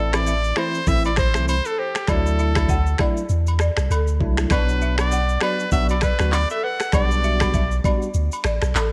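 Afrobeats at 99 BPM in A dorian with a hypnotic, sultry swing, this excerpt sets a bright trumpet melody with light vibrato and delay over a bell-like tine electric piano with ensemble chorus, a woody, buzzing balafon riff with delay, a deep, up-front sub bass with a pitch-drop attack, a tape-warm electronic afro-pop kit of knocking kick, rim click, snaps, handclaps and shaker whose kick falls silent at 8.1 seconds, and background agogo bells and woodblock, all in a bright 1980s-style digital production with light studio reverb.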